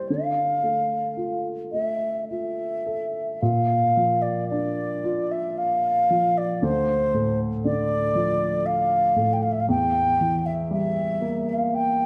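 Longing and haunting, this Celtic slow air in D minor drifts at 52-60 BPM in a rubato 3/4, cut from a longer piece and tuned to A4 = 442 Hz. An airy wooden baroque flute carries the expressive melody with vibrato and tongued notes, sounding both up front and distant, while a dark, woody upright piano supports it throughout. The wet concert hall reverb adds a long glow as the harmony moves through Dmadd9, Bb, Dm and Edim, shifting into a new section at 3.4 seconds.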